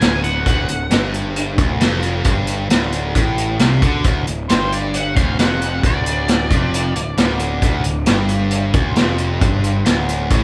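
A raunchy, gritty blues rock and southern rock power-trio excerpt at 134 BPM opens with the full band in a live room with light reverb: an up-front vintage drum kit with punchy kick, medium-tuned snare, hi-hat and a rolled-off top, a bright, double-tracked cranked stack guitar playing an overdriven low riff, and fuzzy picked electric bass, while a dark octave-fuzz lead guitar through wah and distortion sounds briefly, drops out at 1.1 seconds and returns at 4.5 seconds with its melody.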